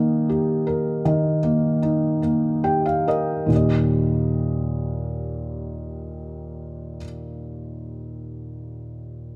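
Tender and swaying, this brief fragment of a slow pop piece moves in 6/8 at roughly 45-55 beats per minute, counted in dotted quarters, and settles in Eb major from its opening chord. A felt-muted upright piano carries the accompaniment from start to finish, ranging from Eb2 up to G5 with a soft, mellow, intimate tone that sits up front in the mix. The hammers' felt and the instrument's audible action noise give the playing a smooth, vintage character, as if heard from the piano bench. The tempo slows through the first 3.5 seconds, where a felt piano fill beginning at 2.2 seconds leads into a second passage that runs to about 8.9 seconds. A small room ambience and a dark, warm production wrap the piano in a close, hushed space.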